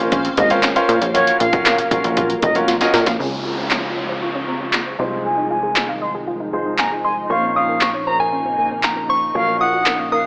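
Dance-pop with an upbeat, euphoric lift, built on a punchy analog drum machine of kick, snare, handclaps and hi-hat placed up front, a funky plucky analog bass, and a clear baby grand piano, silky string machine and soft round arpeggiated pluck pumping in the background, while a bright, reedy silver concert flute carries the melody with vibrato and a gentle FM synth bell joins it at 3.2 seconds over an electronic downlifter and a filter sweep after a drum fill, all given a light reverb and an AM radio sound.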